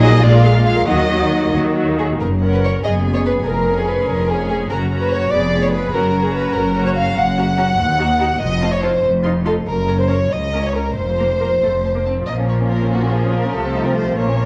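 In a rubato 6/8 at 95 BPM counted in dotted quarters, this dramatic, stormy classical-period movement for symphony orchestra is cut from a longer piece, moving from F# major into Bb minor at 7.2 s. The first violins carry the melody with expressive vibrato, while the second violins sit up front with a soft, intimate attack; smooth, distant violas fill the accompaniment, and vibrato-rich cellos and soft-edged double basses share the bass. A mellow French horn section holds background chords only until 2.0 s, and the whole recording sits in a recital hall's reverb on worn cassette tape whose warbling pitch drift gives it an aged character.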